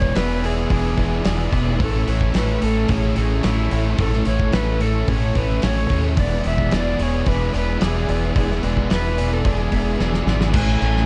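Shoegaze-leaning dream pop rock at 110 BPM in A major, hazy and wistful, this short cut from a longer piece sets a breathy, chiffy jazz flute melody with digital delay over a deep, round fingered bass up front, a loose, muffled indie drum kit with a fat snare and a fill from 10.0 to 10.5 seconds, background riffs from a thick fuzz guitar with distortion and ensemble chorus, a biting double-tracked overdriven guitar and another overdriven guitar with reverse reverb, faint twangy arpeggios from a guitar through a small old amp, and very quiet warbling string-machine cellos, all moving between E7 and Amaj7 in a dark, lightly reverberant mix.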